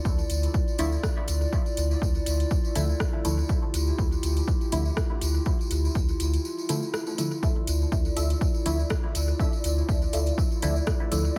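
A dry, punchy electronic kick drives this hypnotic, cavernous dub techno cut, joined by a round sub bass, a dark chorused pad, deep mellow chord stabs with dub echo, overdriven deep house hats and rim clicks, a jingly tambourine, a muted phased dub chord stab from 7.4 seconds, and a bubbling stepped-filter texture from 7.7 seconds, with the pad, bass and stabs pumping around a Dmadd9 chord.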